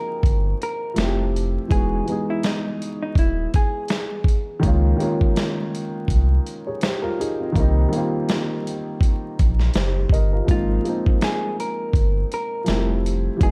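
Nostalgic and dreamy, this lo-fi hip hop excerpt moves at 82 BPM in 4/4 with a light swing on the sixteenths, set in Ab major. A dark upright piano carries the accompaniment from the start, its woody, mellow tone softened by cassette tape coloring and a low-pass filter, with audible action noise lending an intimate, vintage closeness. Over it, a clean, picked hollow-body jazz guitar plays the melody through a low-pass filter, sounding until 4.6 seconds and returning at 10.5 seconds. A thick, saturated sub bass with a fast attack and a gritty, compressed sampler-style drum kit enter at 0.2 seconds, the thumpy kick, medium-tuned snare and hi-hat carrying the roomy character of a large space, all sitting up front beneath a bed of vinyl crackle. The harmony drifts through lush extended chords such as Ab69, Fmaj9 and Emaj9, settling on Db6 and Cm7 before circling back.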